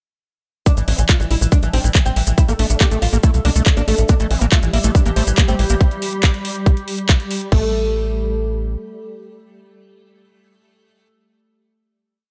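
A four-on-the-floor kick at 140 BPM drives this intense, hypnotic psychedelic trance piece in A phrygian, its tight electronic thump sitting up front with programmed metallic hats, a handclap backbeat and crash cymbal, while close, grainy maracas add hand-played sixteenths. Beneath them a punchy sequencer bass rolls in sixteenth notes, sawtooth and wave-folded with a filter pluck and tube saturation. A woody, fretless oud carries the melody from 0.7 seconds, plucked with a plectrum on double strings as it repeats a riff over a pedal note, colored by phaser, digital delay and sidechain pumping. A nasal vowel-sweep wobble bass offers short answering phrases in the background through lush chorus, and from 2.5 seconds a squelchy, distorted acid line with tape echo cycles a three-step loop that drifts against the bar. A swarming, detuned drone holds a high note from 4.6 seconds, and after the groove ends at 7.5 seconds the oud's final note rings on in a dry, close sound.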